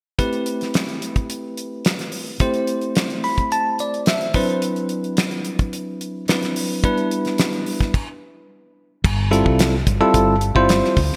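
A bright, bell-like tine electric piano accompanies up front in this soaring electric jazz fusion excerpt, voicing rich extended chords and adding a fill at 3.0 s over a dry, damped 70s drum kit with a fat snare, tight kick, hi-hat and crash cymbal under gated reverb, before a stop at 7.9 s and the arrival of a dark, woody, round fretless electric bass at 9.0 s, the whole mix set in a lush hall reverb with 1980s-style digital production.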